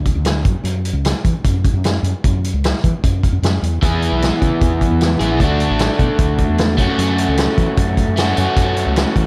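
A crunchy, bright, double-tracked overdriven guitar riff arrives up front at 3.8 seconds over a woody fretless electric bass and a gritty, saturated vintage drum kit with a tight kick and rolled-off top, giving this short, wistful yet upbeat indie rock cut a dark small-room feel as the chords move from E through Dadd9 to F#m.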